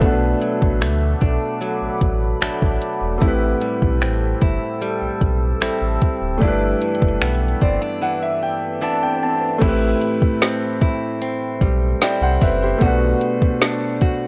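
A dry, gritty recording carries this sensual, moody contemporary R&B excerpt at 75 BPM in A dorian, where a clear, naturally sustaining grand piano accompanies and a picked, compressed clean electric guitar with analog delay plays arpeggios over a deep sine-and-triangle sub bass and an up-front electronic drum kit of soft kick, woody snare, metallic hats, finger snaps and crash. A dark, warbling sawtooth pad with chorus and sidechain pumping sits in the background until 9.6 seconds, while a piano fill from 7.2 seconds and a faint electronic swell from 8.9 seconds carry through a break into the next section.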